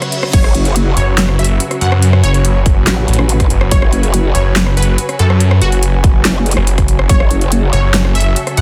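A snarling, distorted saw bass enters at 1.0 seconds, joining a growling, wobbling growl bass and a punchy, overdriven electronic kick that both arrive at 0.3 seconds, giving this half-time heavy wobble dubstep excerpt a chaotic, heavy weight. A bright, lush unison pluck carries the melody through phaser and tape echo over an overdriven big-room dance kit with a huge snare, handclaps, hi-hat, rim click and crash cymbal. Deep in the background, a veiled, con sordino string section holds sustained chords alongside a sustained, ethereal, airy pad, both with sidechain pumping, all squeezed into a dense, heavily limited modern master with little reverb.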